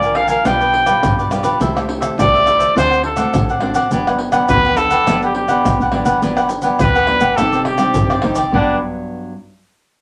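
A clear, jazz-style trumpet with light vibrato leads up front in this playful, joyful samba and choro at 104 BPM in G major, over crisp picked cavaquinho, fingerpicked classical nylon-string guitar that rings on alone until 9.3 s, a round, woody FM bass, and tube shaker, pandeiro, tamborim and deep surdo in a small reverberant room.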